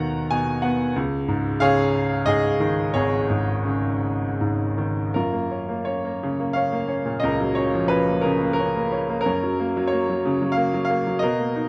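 A solo grand piano opens the recording on an Abm9/Eb chord, its tone bright and brilliant, with long sustain and an up-front presence. The playing is lyrical classical piano in 3/4, moving with rubato at roughly 78-94 BPM in a sunny mood. At 1.0 s the harmony shifts to Dbsus2, and at 5.1 s the music settles into F# major on an F#maj7 chord, opening a second passage that runs to 11.7 s. The piano ranges from Ab1 up to Bb5, and its sound has a smooth, vintage character. A moderate recital hall reverb lends the instrument a natural sense of space in this short passage cut from a longer piece, tuned to A4 = 439 Hz.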